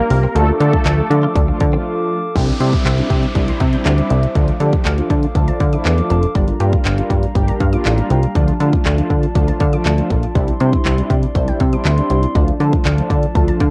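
A cassette-worn home recording with light reverb and a digital ambience frames this driving, bittersweet dance-pop excerpt in D minor at 120 BPM, cut from a longer piece. A detuned, evolving supersaw swell carries the melody only until 1.1 seconds, over dark, round synth brass with chorus and phaser and a glassy, ethereal glass harmonica holding chords in the background, both breathing with sidechain pumping. Up front, a punchy, funky analog bass with a fast filter pluck sits beside an electronic pop kit of kick, hi-hat and handclaps, while a bright, clean direct-recorded guitar riff flickers briefly in the background. After a short break, a detuned analog pluck with a noise layer and moving notch enters at 2.4 seconds with tape-echoed arpeggios, joined by a downlifter sweep. The harmony cycles through Dm, Cadd9 and Gm7, giving the groove its wistful pull.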